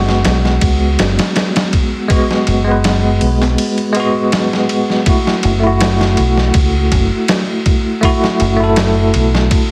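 Dark and smoky, this trip hop excerpt in F# minor moves at 81 BPM with a gentle 16th-note swing, as a bell-like, up-front tine electric piano colored by tremolo, tape echo and vintage sampler grit shifts from F#sus24 to F#m7 at 5.1 seconds over a round, punchy deep dub fingered bass and a pitched-down, gritty sampler-style kit of thumpy kick, medium-tuned snare and ride, all set in light reverb with a heavily compressed, radio-like sound.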